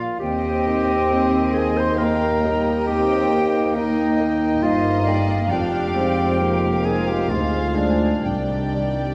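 A clear solo clarinet, an airy, close-miked flute group and a dark, mellow baby grand piano open this longing, sorrowful cinematic film-score fragment at a rubato 67 BPM in 3/4, joined at 0.2 s by a soft, floating violin section carrying the melody, a vibrato-laden chamber violin line, an intimate viola section and a warm cello section played sul tasto, a pure-toned double bass section and a distant, very quiet French horn section holding sustained chords, the orchestra bathed in a wet scoring-stage reverb as the harmony moves from Eb to Fm7 and on to Cmadd9.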